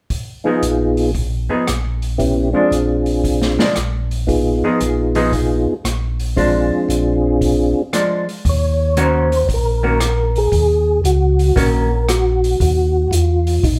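A swung 4/4 groove at 115 BPM from an open, acoustic jazz drum kit, with hi-hat, rim click, a medium-tuned snare and a boomy kick, drives this bluesy, soulful soul jazz organ trio excerpt, cut from a longer piece. A soft, flute-like tonewheel organ with percussive attack, chorus vibrato and slow rotary speaker carries the melody, while a second, round and dark organ with key click and slow rotary handles the bass, and a clean, fingered hollow-body electric guitar comps until 11.9 seconds. Moving through Fm7b5 and Bb7 chords, the tune pauses in a short break at 7.9 seconds before settling onto Ebm7 at 8.4 seconds, all set back in a wet studio reverb.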